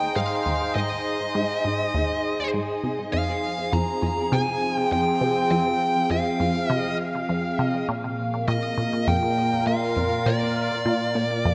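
Cosmic and mysterious, this short cut from a longer piece of ambient, sequencer-driven space music moves at 101 BPM in a straight 4/4. A sweeping resonant pad holds sustained chords throughout, its evolving, warbling sawtooth tone sitting up front with slow-attack filter swells and lush chorus. Beneath it, from 0.2 seconds, a resonant blip pluck repeats a low riff, sounding juicy and squelchy with a moving notch, fast attack and short decay, colored by chorus, phaser and delay. Over the top, a dark, high-gain electric lead guitar carries the melody, picked and distorted with delay trailing its notes. The harmony drifts from Ab to Fmadd9 at 3.1 seconds and lands on Bb at 7.9 seconds, all bathed in a wet plate reverb that lends the space a long, glowing tail.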